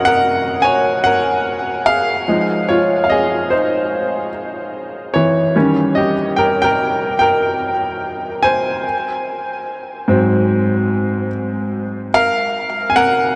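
A clear baby grand piano opens alone on a lush Ebm11 chord, its intimate, natural tone sitting up front with the soft click of the action audible beneath the notes. This is sultry, late-night R&B in Eb dorian at a slow 73 BPM in 4/4, with a lazy 16th-note swing and tuning set a touch low at A4 = 439 Hz. The solo piano moves through Fm7, Eb7b9 and Ab7, ranging from Ab2 up to Ab5, and its short sustain is stretched by a delay on the instrument. The whole mix is dreamy and soaked in a huge ambient reverb with a decay of 9.1 seconds, so each phrase lingers in a vast, hazy space. At 12.1 seconds the music turns to a rootless Ebmadd9 voicing, and the fragment ends at 13.4 seconds, cut from a longer piece.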